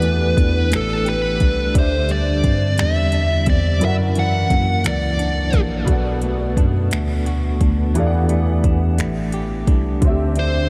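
Yearning and sultry, this slow six-eight R&B cut in E minor at 58 BPM sets a dark, overdriven lead guitar with delay up front on the melody from 0.0 to 5.6 seconds, returning briefly at 10.4 seconds, over a clean, fingered electric guitar with tremolo, an open grand piano with long sustain and analog chorus, a mellow tine electric piano carrying the bass, and a produced drum kit of soft kick, metallic hats and finger snaps, all soaked in a dreamy, huge ambient reverb as chords such as Em11, D9sus4 and F#7b13 drift by in this excerpt from a longer piece.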